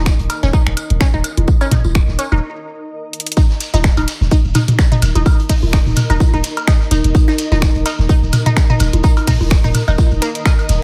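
A punchy, tape-warm electronic kick sits up front in this sparse, hypnotic minimal techno excerpt, alongside a deep sine sub bass with a pitch-drop attack and a cloudy, evolving granular pad, both pumping against the sidechain. A squelchy, detuned blip pluck with phaser and digital delay threads through house-kit finger snaps and hi-hats, a background vintage kit's filtered hi-hat, snare and tambourine, and an analog electronic cowbell, woodblock, congas and toms set in a large room. After a break from 2.4 seconds, the drop at 3.4 seconds brings in a grainy, distant shekere, and a warm marimba note with tape echo surfaces briefly at 6.9 seconds.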